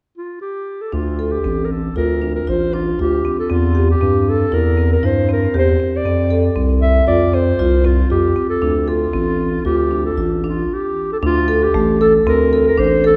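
Contemporary chamber music in an urgent, restless 5/4 at 116 BPM in D minor, where a solo clarinet enters alone at 0.2 seconds with jazz-style vibrato and scooped notes, joined at 0.9 seconds by close-miked, dry marimba arpeggios played with medium mallets and a deep, thick, saturated sine sub bass up front, moving through Dm7, C/E, F5 and Dm before a brief stop at 10.7 seconds and a closing D5, all set in a reverberant concert hall heard from further back in the room.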